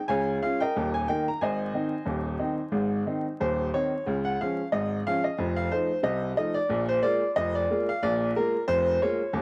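A home cassette recording with vinyl crackle and a moderate spring reverb gives this short piece, cut from a longer one, a vintage, lived-in sound. It is a lively, cheerful ragtime number for solo upright piano at 91 BPM in 2/4, with a gentle swing on the sixteenth notes. The key is Ab major, and the tuning sits at A4 = 436 Hz. The piano is up front, bright and woody yet smooth, and it ranges from Eb1 up to Bb5 across its 9.4 seconds. The opening phrase moves between Db and Ab chords, and a second strain begins at 4.1 seconds, passing from Db through F7 on its way forward.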